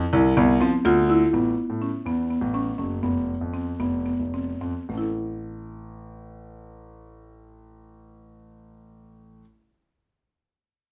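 A wet studio reverb surrounds this short passage, cut from a longer piece of contemporary chamber music in 7/8, shimmering and restless in mood. A concert grand piano carries the bass, intimate and vintage in tone with deep lows and audible action noise, while a buzzing marimba played with medium mallets spins woody, dark arpeggios up front. The pulse slows between 1.3 and 4.9 seconds as the chords move from F5 through Aadd9 and back to F5 before arriving on A at 4.9 seconds.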